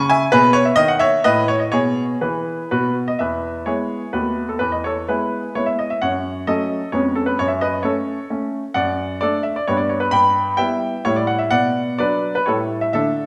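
A wet recital hall reverb surrounds a clear, natural baby grand piano, heard up front with short sustain, in this cheerful, playful fragment of a classical-period sonatina cut from a longer piece. The solo piano plays throughout, moving at 129 BPM in 3/4 with a rubato feel and ranging from D#2 to B5. It opens in E major, passing through chords such as G#m/B, B9/A and E/B before a new section begins at 3.2 s with E, B7/D#, F#m and C#7/E#. At 8.7 s the music turns to D major, stepping through D/F#, G, Em/G, Bm and A7. The result is a cheerful passage with a clear, natural piano tone set in a spacious room.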